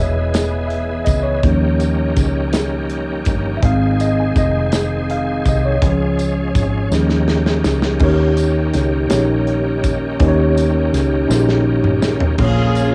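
Jubilant and hopeful, this slow gospel passage in a straight 6/8 is cut from a longer piece and carries the close, dry feel of a small-room home recording on cassette. A worn, slightly out-of-tune tine electric piano takes a solo over the first 8.0 seconds, its mellow, clean tone direct and warm. Beneath it, a gritty, overdriven tonewheel organ holds shouting sustained chords with key click, chorus vibrato and a slow rotary speaker. A foam-muted fingered electric bass sits up front, and an acoustic drum kit with a medium-tuned snare and tight kick, colored by cassette tape, enters at 0.3 seconds and plays fills at 6.9 and 11.3 seconds. A jingly tambourine sits in the background, and at 12.4 seconds a smooth, focused string section arrives up front with a bowed, vibrato-rich ensemble melody on a minor chord.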